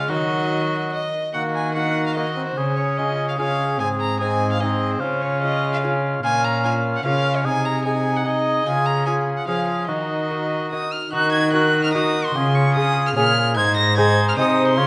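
The sound sits in a moderate recital-hall reverb of 1.3 seconds, with a soft top end that stays below 10.5 kHz. This is a solemn, rustic renaissance-style consort dance in 3/4 at 147 BPM, cut from a longer piece and set in Eb dorian, with the harmony moving through Ebm, Db, Ab and Bbm. Up front, a single bowed violin with a reedy, gut-string period tone carries the melody, while a cor anglais with light vibrato and a smooth top plays a second line beneath it. A brilliant, roomy trombone sounds from a distance as accompaniment, and a delicate fingerpicked lute with double strings, some doubled at the octave, adds accompaniment from the background. A rich, nasal cello with light vibrato bows the bass, and the five parts play together from the opening to 14.9 seconds.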